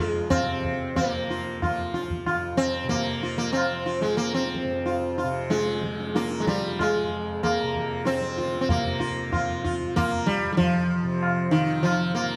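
A moderate, spacious stage reverb surrounds this short Hindustani classical excerpt in 3/4 at 94 BPM, where an up-front, plectrum-plucked sitar with buzzing sympathetic strings carries a longing, meditative melody over a softly plucked, shimmering tanpura drone, joined at 0.3 seconds by a low-tuned, ringing tabla set back in a large room, as the music speeds up and moves into a new section at 8.7 seconds.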